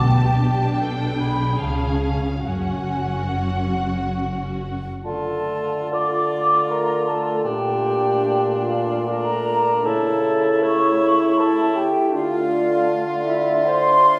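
Yearning and melancholic, this romantic orchestral movement in 3/4 moves with a rubato feel and opens on lush bowed strings. A distant violin section sings the melody over a darker violin line, focused violas, and rich, vibrato-laden cellos and double basses, while a large flute ensemble floats a pure, straight-toned line above. The strings stop at 4.8 seconds. At 5.0 seconds a clear cor anglais enters, and from 5.1 seconds a shadowy, roomy clarinet, a mellow bassoon and a smooth-topped French horn section holding chords follow, all joining the flutes until 14.2 seconds and all heard from further back in a wet concert hall as part of a longer piece.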